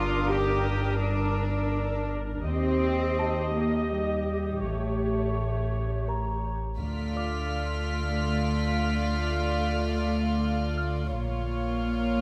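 This eerie, mysterious suspense cue opens at 83 BPM in 3/4 with dark, woody violas, floating cellos and double basses bowed sul tasto over a deep sine sub bass drone, while a delicate, tinkling music box sits in the background and high violins hover briefly. At 6.8 s the harmony settles into D harmonic minor as the high violins return and two more violin sections enter, one carrying a narrow, pure melody and the other staying on a single note. The violas sound lush while the violins and double basses sit close, all set in a moderate scoring-stage reverb, and this cut from a longer piece ends on a Bbm chord.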